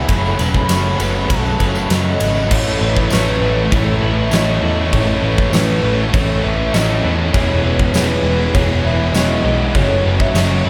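Shoegaze-leaning dream pop rock with a hazy, dreamy mood, cut from a longer piece and drenched in a huge ambient reverb, where a hollow, woody clarinet-like synth lead with chorus, delay and vibrato carries the melody over a lush, very quiet string machine and a twangy, slightly broken-up guitar picking arpeggios through a small old amp. Beneath them, a dark overdriven semi-hollow guitar with reverse reverb, a very quiet fuzz guitar and a double-tracked, tight distorted guitar play riffs, while a round, foam-muted vintage bass holds the low end. A huge arena drum kit with a fat snare and punchy kick sits up front from 0.1 seconds, joined by a jingly, very quiet tambourine, as the chords move from F#m to A, then Eadd9 at 7.3 seconds and back to F#m.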